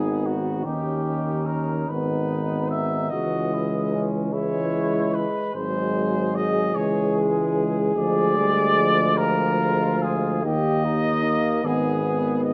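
In a slow, rubato 6/8, this elegiac, solemn hymn-like brass band excerpt unfolds over about 12.5 seconds. A mellow cornet with light vibrato carries the melody up front, while a distant, roomy flugelhorn sings a second line beneath it and a soft-attacked solo trombone adds accompaniment. A tight, vintage trombone section sits in the background, a clear tuba anchors the bass, and a recital hall's moderate reverb surrounds the ensemble as the minor-key harmony passes through a diminished chord before settling home.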